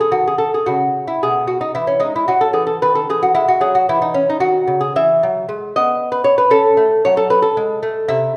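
A solo lute opens the recording, its delicate, fingerpicked line sounding from the very start in a baroque-style classical dance in E major. The mood is flowing and dance-like, moving at 113 BPM in 3/4 with a rubato feel that lets the phrasing breathe. The instrument sits up front, its mellow nylon and doubled strings, some paired in octaves, giving each note a soft shimmer across a range from B2 to E5. The harmony moves from B to E, then opens into Emaj9 at 5.0 seconds and F#madd9 at 6.5 seconds, adding a gentle color to the close. A recital hall reverb surrounds the lute with a lingering church or concert-hall bloom. The lute falls silent at 8.3 seconds, as this short passage is cut from a longer piece.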